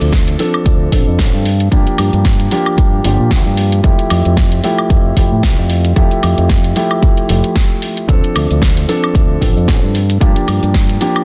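Sunny and groovy, this 113 BPM nu-disco excerpt in F major swings its 16ths over a punchy, up-front electronic kick and a house kit of punchy snare, bright hi-hats, shaker and woodblock, while a bright fingered electric bass with an envelope filter pumps beneath a dark, mellow grand piano, intimate with audible action noise and tape echo, moving through Dm7, Gm7 and Fmaj9 in a dense, heavily limited modern master.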